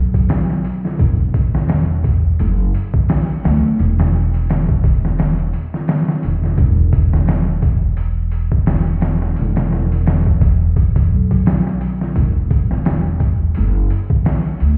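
Trip hop at 86 BPM with a swung sixteenth-note feel sets a smoky, brooding mood in this short excerpt, where a woody, dark pizzicato upright bass, thickened by tube saturation, sits up front beside a pitched-down, gritty sampler-style drum kit of thumpy kick, medium-tuned snare and hi-hat, overdriven and roughened with vintage 12-bit crunch in a small room, all heard muffled as if through a wall, with stone-room reverb and vinyl crackle.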